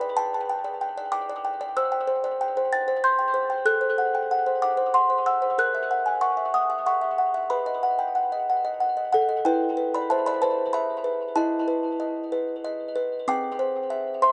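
Eerie and wistful, this short classical lullaby for music box moves in a gentle 3/4 at 94 BPM in E minor, cut from a longer piece. The solo music box sits up front, delicate and tinkling, its plucked tones mellow and soft with a small-box character, spanning C4 to A6 and trailed by tape echo. Light reverb and close, detailed miking frame the passage as it shifts into a new section at 9.4 seconds, with a B7 over E lending a haunting tension.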